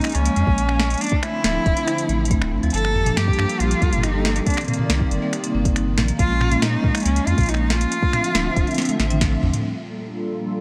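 Cerebral and eerie, this short IDM excerpt moves at 139 BPM in a straight 4/4, centred on G minor and tuned a touch below standard pitch. A rich, bowed cello carries the melody with expressive vibrato, soft attacks and portamento, trailed by tape echo, while a hollow, flute-like pad warbles beneath in sustained chords thickened by ensemble chorus. A vibraphone struck with medium hard mallets spins ringing, metallic arpeggios through a low-pass filter and delay, its motor vibrato adding shimmer. A booming analog drum machine is present from the start, its finger snaps sounding alongside a tonal snare, toms and metallic hats that are filtered dark, and the low end fills out with a round, up-front sine sub bass entering at 0.1 seconds and a soft, tape-warm electronic kick from 0.5 seconds. Chords drift through Bbm7, Dm9, Gm9 and Cm9 under light digital reverb, and a drum fill from 8.8 seconds leads to a full-band accent at 9.2 seconds.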